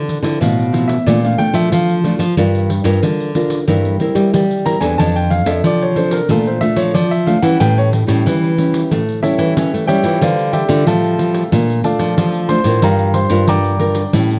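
Lively and yearning, this samba and choro excerpt puts a warm concert grand piano up front on the melody as a solo, its intimate, polished tone rich with long sustain, deep bass and audible action noise. Beside it, a fingerpicked, classical nylon-string guitar with fresh strings plays the accompaniment, while a second, bright, small-sounding nylon-string guitar carries the bass line and a jingly pandeiro adds percussion with a live-room character. The dry, close sound evokes a 1970s studio with light reverb, as the harmony moves from Dm9 through Bbmaj7, Gm7 and A7 before returning to Dm11 and continuing through Bbmaj7 and Gm7.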